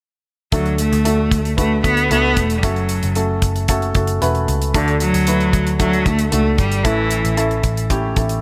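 A light reverb gives this short piano-driven pop clip a gentle sense of space, with the cello, piano and drums all sitting up front. Set in D major at 114 BPM in a straight 4/4, it carries an uplifting, warm mood as the harmony moves from D to F#m, back to D and on to A. A clear, focused solo cello carries the bowed melody with vibrato in its lower register, entering at 0.5 seconds and falling silent at 7.4 seconds. Underneath, a woody, natural upright piano with short sustain supplies the accompaniment, while a vintage muted picked electric bass adds a dark, round, punchy line with an amped, foam-muted tone. A damped 70s acoustic kit keeps time on hi-hat and a tight, dry kick, and the piano, bass and drums play on together until 8.4 seconds, where the clip is cut from a longer piece.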